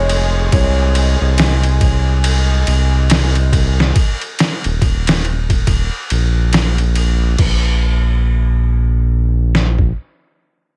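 A round, deep analog bass with tube saturation sits up front through this brooding, cinematic trip hop excerpt, its mellow sustained tone evolving beneath a gritty, pitched-down sampler-style kit of thumpy kick, medium-tuned snare, ride and crash that swings its sixteenths. A dark, woody violin section holds distant, bowed chords with vibrato only until 4.0 seconds, and the music moves to a new section at 7.4 seconds. The mix is echo-heavy yet dry, with the compressed, tape-toned drums carrying a small-room character.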